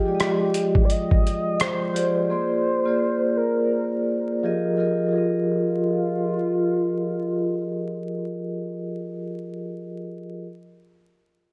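Melancholic and reflective, this lo-fi hip hop fragment pairs a velvety synth lead, its smooth sawtooth melody softened by chorus, vibrato, tape echo and a low-pass filter, with a ringing, metallic vibraphone played with medium mallets and a slow motor vibrato. A gritty, compressed sampler-style drum kit with a thumpy kick, hi-hat and rim click sits up front in a swung feel but plays only from 0.2 to 2.2 seconds. The lead stops at 8.7 seconds while the vibraphone carries on to 10.5 seconds, all under light reverb and a haze of vinyl crackle.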